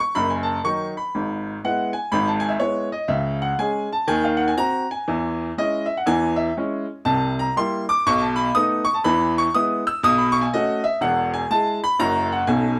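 A bright, woody upright piano plays solo stride jazz in E major at 122 BPM with a playful, swinging feel, ranging from E1 to E6 and sitting up front in a moderate studio reverb as it moves from F#m69 through C7 and B7 to end on F#7 at 12.0 seconds in this short cut from a longer piece.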